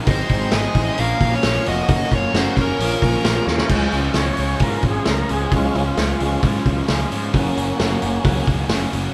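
Classic rock at 132 BPM in 4/4, brooding and gritty, cut from a longer piece with a band playing live in one room under a moderate large-studio reverb, built on a saturated vintage kit with dark cymbals and a punchy kick, a round fuzz-toned picked bass, and two overdriven rhythm guitars, one bright and raw, the other mellower, riffing in the background over chords moving from Ab to Bbm to Gb. Until 3.5 seconds a dark, smooth overdriven lead guitar carries the melody with a distorted octave-fuzz guitar tracing a second line beneath it, while a very quiet woody, boxy upright piano accompanies until 3.6 seconds. After a drum fill at 3.5 seconds, the lightly overdriven tonewheel organ, full-bodied with vibrato and key click, takes a solo from 3.7 seconds over Db and then Gb.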